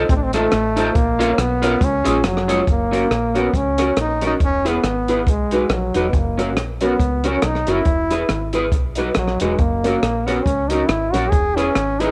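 A swung 139 BPM ska groove in 4/4 drives this joyful, upbeat excerpt in F# mixolydian. A bright, punchy trombone with vibrato carries the melody up front from 0.1 seconds, over a compact cocktail kit of hi-hat, punchy kick and rim click. A deep, round, foam-muted dub bass and a slightly broken-up electric guitar with subtle chorus support it, and woody, boxy upright piano stabs sit in the background. The chords move from F7, A#m and C# into a repeating F#, E, B cycle, all in a small room with light reverb.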